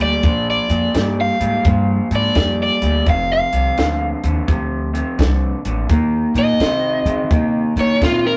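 An overdriven semi-hollow guitar opens this soulful, gritty electric blues shuffle with a dark, hollow-bodied solo, up front beside a slightly broken-up, lo-fi riff from a picked electric guitar through a small old amp, while a woody, thumpy pizzicato upright bass plays beneath. A compact cocktail drum kit joins at 0.2 seconds with hi-hat, a tight kick and a high-tuned snare, dry and natural against the wet small-room reverb. The rough rehearsal-room sound carries tube saturation as the chords move from Bb to F5 and then Eb7(no3), in a passage cut from a longer piece.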